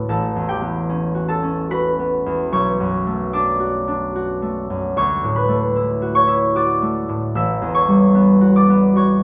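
A concert harp opens the recording at once, playing alone as a solo classical piece with a mysterious, gentle mood. Its thumb-plucked strings sound warm and ringing, set up front and spanning from A1 up to E6. The playing moves in a flowing triple metre with rubato, giving the phrases an unhurried, breathing feel. The harmony moves from A13 through Bm7 and Dadd9 before returning to A13 near 7.4 seconds, lending the passage a softly colored, unresolved quality. A wet recital hall reverb surrounds the harp, and this brief cut from a longer piece ends at 9.2 seconds.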